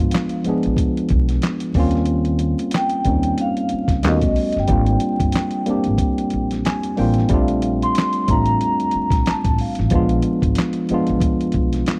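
R&B with a neo-soul lean, this relaxed, soulful 12-second excerpt sits at 92 BPM in Bb major with a gently swung 16th-note feel, cut from a longer piece and carried by a worn, slightly out-of-tune tine electric piano up front through a combo amp, whose chords move from a rootless Bb7b9 through Eb7 and Abmaj13, with a short fill at 6.3 seconds. Above it, a mellow, ringing vibraphone played with soft mallets and a fast motor vibrato carries the melody with a slapback echo until 10.2 seconds, while a woody, dark pizzicato upright bass thumps underneath. A gritty, compressed sampler-style drum kit, tape-warm and up front with a thumpy kick, medium-tuned snare, hi-hat and handclaps, completes a dry, close 1970s-style studio sound dusted with vinyl crackle.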